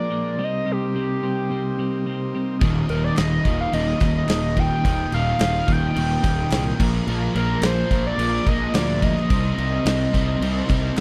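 Indie rock at 108 BPM in Eb major with a carefree, wistful mood, cut from a longer piece, where a gritty, screaming synth lead with slapback echo carries the melody over a buzzy combo organ's background chords in spring reverb and a twangy twelve-string electric guitar riff with harmonic tremolo, before a crunchy overdriven guitar with ensemble chorus, a round fuzz bass and a big rock drum kit with a punchy kick and bright cymbals enter at 2.6 seconds, joined by very quiet crisp group handclaps at 3.2 seconds, all in a dry, close 1970s-style studio sound.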